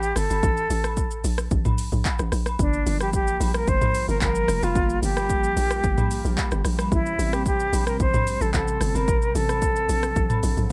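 A light reverb gives this short amapiano clip a soft, airy space, with the concert flute and the punchy deep house kit sitting up front. At 111 BPM in G minor with a straight 4/4 feel, the mood is hypnotic and soulful, the flute carrying a pure, expressive melody with vibrato and a tape echo trailing its notes. Beneath it, a hollow, bouncy log drum bass with a fast attack and mellow decay anchors the low end, while the layered electronic kit brings handclaps, metallic hi-hats, rim clicks, shaker and toms. Distant agogo bells and woodblock join at 0.3 seconds from the background of a large room, and at 2.6 seconds a breathy, detuned pad fades in with a slow attack, coloured by chorus and phaser and pumping with sidechain compression. The harmony opens on a rootless Gmadd9, settles on Gm7, and moves to Am7 at 6.9 seconds, cut from a longer piece.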